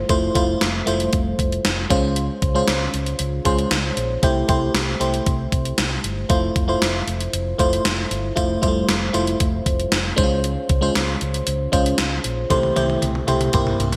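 A glassy, bell-like FM electric piano opens this uplifting, nostalgic slice of 1980s-style pop, its fast-attack, decaying tones coloured by chorus and phaser and placed up front, while an amped fingered electric bass sits low beneath it. A gated digital drum machine joins almost at once, with a thumpy kick, hi-hat, toms and a snare drenched in gated reverb, its tape-tinged, sampler-style sound also pushed forward. The harmony circles through Fmaj7, Dbmaj7 and Am7/C in a steady straight four, giving the passage a wistful lift. A moderate plate reverb and bright digital production frame the whole excerpt in a polished period sheen. From 12.5 seconds a drum fill carries the music to its close at 14.0 seconds, where it is cut from a longer piece.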